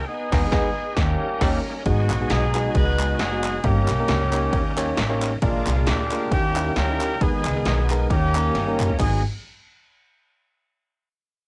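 Fervent and soulful, this uptempo gospel excerpt swings at 134 BPM in G# harmonic minor, opening with a band accent as a clear, tight horn section carries the melody over a shouting tonewheel organ, its fast rotary speaker and chorus vibrato sitting in the background. A bell-like tine electric piano and a woody, dark pizzicato upright bass join at 0.3 seconds alongside a punchy analog drum machine re-recorded in a large room, while hollow group handclaps enter at 2.1 seconds and a drum fill arrives at 8.5 seconds. Light reverb and cassette tape colour this homemade recording, and the chords move from G#m through D#7 and A#7 to a D#7b9 before settling back on G#m.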